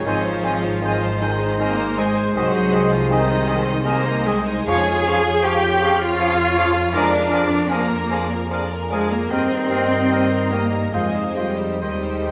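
This excerpt from a slow, romantic classical movement for symphony orchestra unfolds in a serene, lyrical 3/4 at 66-80 BPM with gentle rubato, as a clear violin section carries the melody over a richer, more distant violin line and a chord progression that moves from Ab through Db/F and Bb7/F to Eb/G and Fm7. The lush, up-front cello section and the double basses anchor the bass, while the violas with soft portamento and a clear, very quiet bassoon fill in the accompaniment, and a warm oboe, a roomy clarinet and a pure, veiled flute ensemble add second lines. Mellow French horns and trombones hold sustained chords, a distant trumpet adds mellow stabs, and a concert harp rings out quiet arpeggios, all set in a spacious concert-hall reverb.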